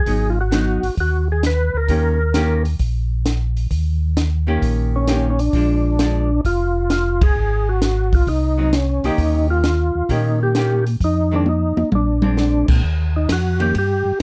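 Greasy and bluesy, this short cut from a longer soul jazz organ trio swings at 132 BPM in Eb mixolydian, moving through Abm7, Eb7, Bb7, Ab7 and Fm7 to Bb9 before landing on Eb. A percussive, lightly overdriven tonewheel organ carries the melody through a slow rotary speaker and chorus vibrato, while a second, mellow and round tonewheel organ holds down the bass up front, a clean, picked hollow-body archtop guitar comps underneath, and a compact acoustic cocktail kit adds a high-tuned snare, punchy kick and dark cymbals. A band accent hits at 7.1 seconds, a drum fill arrives at 11.5 seconds, and the lead organ takes a brief solo from 12.8 seconds, all in a warm production with little reverb.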